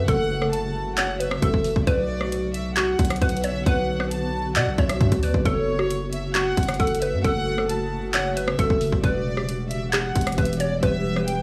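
A half-time trap groove at 134 BPM drives this eerie, hard-hitting hip hop excerpt in F# phrygian, where an overdriven, up-front electronic kit with a hard-clipped kick, bright hats, handclaps and rim clicks enters at 0.1 seconds over a deep, long-decaying 808-style sine bass, while a hollow, bouncy square-wave pluck carries the detuned, chorused melody through digital delay and a low-pass filter, a soft-attack studio violin section floats a pure second line above, and a cloudy, evolving granular pad holds blurred sustained chords moving from F#m to Bm, back to F#m and on to Em, all set in a light digital ambience.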